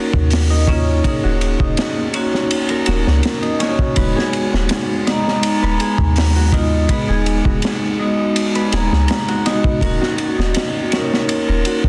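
Brooding and hypnotic, this trip hop excerpt moves at 82 BPM in Eb minor, drifting from Ebm7 to Abm7/Eb at 4.0 seconds and back at 9.8 seconds. A bright, metallic vibraphone struck with hard mallets carries the accompaniment through harmonic tremolo, vintage 12-bit sampler grit, a low-pass filter and tape echo, while a fingerpicked concert harp rings out arpeggios through its own tape echo. Underneath, a deep, round 808-style bass and an up-front, saturated breakbeat kit with a tight kick, high-tuned snare and dark cymbals anchor a dense, heavily limited mix in a small room.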